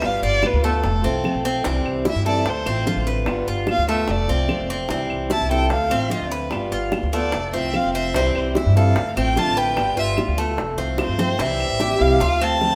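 Sunny and warm, this Cuban son and guajira passage sets an expressive, up-front bowed violin soloing with vibrato and portamento until 11.4 s over bright, metallic tres arpeggios, a boxy picked archtop guitar, dark, thumpy pizzicato upright bass on gut strings, round low-tuned bongos in the background with a fill at 11.0 s, and very quiet woody claves, as the band plays live in a reverberant stone room.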